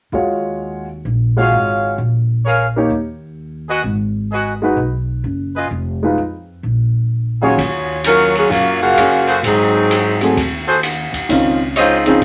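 An intimate concert grand, with its action noise audible and a deep low end, opens this swinging, brassy big band swing passage alongside a woody, thumpy pizzicato upright bass, and a clear trumpet section begins punching out stabs at 1.4 s. An airy small-room drum kit with dark ride cymbals, hi-hat and a boomy kick joins at 7.6 s. At 8.1 s a warm, tight, close-miked saxophone section takes the melody up front, both horn sections carrying light vibrato over a moderate studio reverb.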